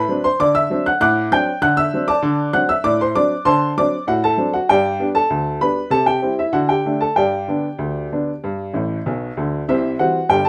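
Cheerful and lively, this short ragtime piece for solo upright piano moves in a straight 2/4 feel, its woody, boxy tone sitting up front with short sustain in a moderate studio ambience. The harmony starts on a dominant seventh before settling home and moving briskly through a few changes, and a piano fill from 8.7 to 9.7 seconds closes the opening passage just before the piece is cut off at 10.5 seconds.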